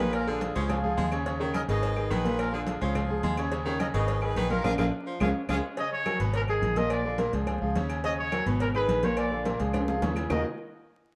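Driving, danceable salsa at 212 BPM, cut from a longer piece, where a brilliant, punchy horn section carries the melody over bright concert grand piano, round fingered electric bass, a bright baritone saxophone second line and background congas, cowbell and bongos, claves, and ringing agogo bells and timbales, until a punchy trumpet with vibrato takes the lead at 5.8 seconds over chords moving through Bb7, Db and Abm, all heard from further back in a room with wet spring reverb and vinyl crackle.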